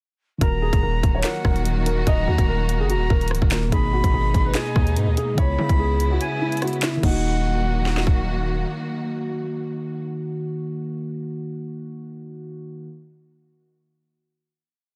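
A cold, ominous half-time drill beat of hard-clipped kick, sharp snare layered with handclaps, rim clicks, crash and skipping hi-hat rolls opens alongside a distorted, saturated 808-style bass with long sub notes and pitch slides, a dark, boxy grand piano loop, a distant, airy jazz flute counter-melody with delay, muted felt-like synth keys holding open chords through chorus, and a lush bowed string pad, with a brief break at 6.2 seconds before a final chord at 7.0 seconds where the strings ring to 10.0 seconds and the synth keys linger alone until 12.9 seconds.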